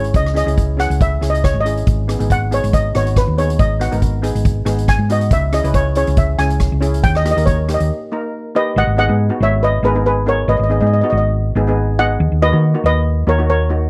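A dry, close 1970s-style studio sound frames this intense, dramatic calypso excerpt in G# minor at 139 BPM with a light swing, where a mellow double-seconds steel pan played with soft rubber sticks carries the shimmering melody up front, a bright cello-pan steel pan struck with hard rubber sticks supplies accompaniment beneath it, a dark, round hollow-body fingered electric bass holds the low end, and an airy street-band drum kit of hi-hat, boomy kick and rim click plays until 7.9 seconds, opening a short break before the second section arrives at 8.8 seconds on a G#m7 chord.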